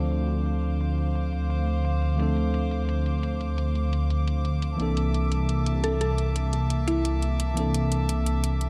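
A saturated, menacing detuned saw bass sits up front in this lush, melancholic liquid drum and bass excerpt at 173 BPM in D minor, beneath a clean tine electric piano with dub echo and a filter sweep, floating bowed chamber strings, filtered metallic electronic hi-hats, and a woody, round mallet-like synth pluck with chorus and tape color that carries the melody from 5.8 to 7.1 seconds over a move from Dm7 to C13.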